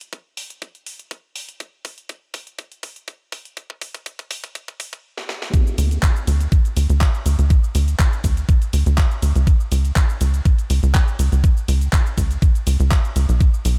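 An uplifting, expansive progressive house excerpt at 122 BPM opens with a build-up of drum fills on a layered, tape-warm house kit of handclaps, hi-hat, ride cymbal, shaker and cracking snare, re-recorded in a large room, over an up-front, knocking electronic kick, until the drop at 5.5 seconds is joined at 5.8 seconds by a tight, punchy, driving sawtooth and square-wave sequencer bass with a fast-attack, decaying filter pluck and sidechain pumping, all set in a dry, filtered sound.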